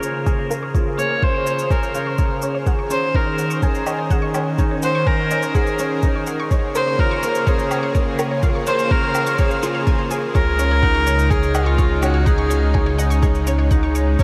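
Tender and hopeful, this piano and strings electronica cut from a longer piece moves at 125 BPM in Db major, with an up-front bowed viola singing a rich, floating melody through tape echo over a felt-muted upright piano riff, mellow and intimate with audible action noise. A lush, detuned sawtooth pad and a round analog pluck playing arpeggios both carry chorus and sidechain pumping, each under a filter sweep during the build-up, while an overdriven soft electronic kick enters at 0.3 seconds beside a gritty shaker and woodblock. At the drop at 10.3 seconds a deep sine sub bass arrives, and the whole dreamy mix is soaked in a huge ambient reverb.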